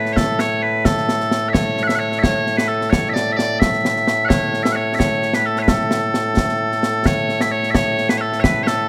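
Loud, piercing solo bagpipes carry a continuous melody up front from the very start of this proud, stirring cut from a longer Scottish traditional pipe tune in A major, moving in a straight 6/8 at 87 BPM, while a close, dry concert snare and bass drum with bright cymbals enter at 0.1 seconds, all set in a moderately reverberant stage space as the opening phrase returns at 7.1 seconds.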